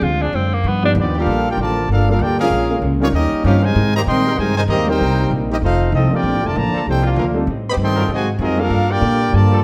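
A woody, pizzicato upright bass sits up front through this sultry, swinging jazz excerpt in G minor at 194 BPM, opening under a brief solo from a clear tenor saxophone with scooped notes that stops at 0.9 s. From 1.0 s a tight, close-miked trumpet section carries the melody while a muted trombone section adds a veiled, bucket-muted second line, and a bright trombone section holds sustained chords in the background. A natural-sounding baby grand piano with short sustain and a very quiet, dark, clean hollow-body electric guitar provide accompaniment, all set in a large studio reverb.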